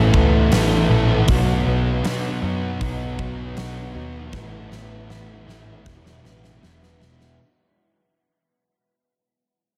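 A straight 4/4 pulse at 79 BPM carries this dreamy, hazy shoegaze and dream pop fragment, cut from a longer piece and fading out across its full 7.4 seconds. An up-front, dark fuzz guitar with distortion and analog chorus drives a riff beside an overdriven semi-hollow guitar soaked in reverse reverb, while a very quiet, bright, direct-recorded clean guitar picks arpeggios and a round, foam-muted vintage bass anchors the low end. A big acoustic drum kit with a fat snare and punchy kick joins at 0.1 seconds and rolls into a fill from 4.3 seconds, over chords moving from Asus2 to B, back to Asus2 and on to Eadd9, all set in a small room ambience.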